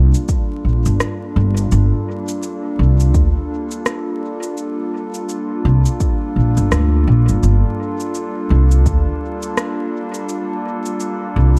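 Deep and spacious, this ambient dub excerpt moves at 84 BPM in 4/4 with a 16th-note swing of 59%, resting on a single Gm9 chord in G minor and tuned to A4 = 442 Hz. A warbling, nostalgic tape-like pad holds sustained chords throughout, its lo-fi, detuned tone built from a blend of square, triangle, sine and sawtooth waves with wave-folding, ring modulation, chorus and its own reverb, slow to bloom and long to fade. Up front, a woody, dark upright bass with steel strings is played pizzicato in a low register, thickened by tube saturation. An electronic cabasa and rim click are steeped in dub echo, while a deep, produced electronic kick sits forward in the mix until it drops out at 9.0 seconds. The room itself is dry, but the mix leans heavily on echo and carries a layer of vinyl crackle.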